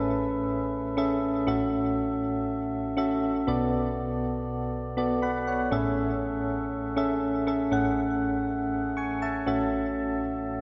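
In a straight 4/4 pulse, this glossy, uplifting pop fragment features a single soft, round electric-piano-like synth that plays alone from 0.0 to 10.6 s, moving through Amaj7, F#m7/A and Bm7 chords. The up-front keys have a gentle, sine-like tone with a fast attack and decaying notes, coloured by chorus, tremolo, delay and a filter sweep. A wet concert-hall reverb with a 2.3 s tail surrounds the part, and the dulled top end gives the sound a soft sheen.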